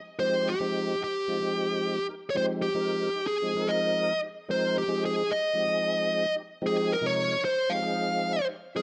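A dark production set in a moderate, large studio reverb frames this driving, slick jazz fragment in F minor, moving at 112 BPM in a straight 4/4 over a single Fm9 chord. A bluesy, overdriven electric lead guitar carries the melody up front with a picked, distorted bite. Alongside it, a clear, clean tonewheel organ, also up front, with audible key click, slow rotary speaker and chorus vibrato holds the accompaniment, both parts sounding together from 0.2 s to 8.8 s.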